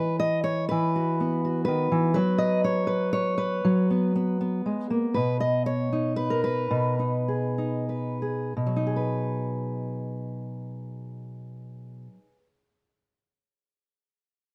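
Played rubato in 3/4 and drifting between 82 and 125 BPM, this hopeful, peaceful folk fragment in B major features a solo fingerpicked steel-string acoustic guitar, tuned to A4 = 442 Hz. The guitar sits up front with a dark concert tone and audible finger squeaks, spanning B2 to D#5 over light reverb as it moves from Esus2 to F#sus4 and then settles on B6 at 5.2 seconds. It slows down from 5.2 to 8.6 seconds before a closing passage that runs to the end at 12.8 seconds.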